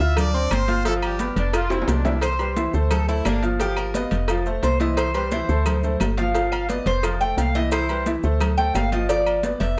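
A sunny, danceable salsa fragment in C major at 175 BPM opens with a brilliant, vibrato-laden horn section over bright concert grand piano, a woody, dark FM bass up front and a background bed of high-tuned congas, grainy maracas, ringing agogo bells and timbales, round low-tuned cowbell and bongos and very quiet claves; a mellow saxophone section slips in at 1.4 s ahead of a drum fill, and from 2.2 s a picked, metallic Cuban tres with double strings takes a solo over a cycling Dm7–G7–F–Cmaj7 progression in light reverb.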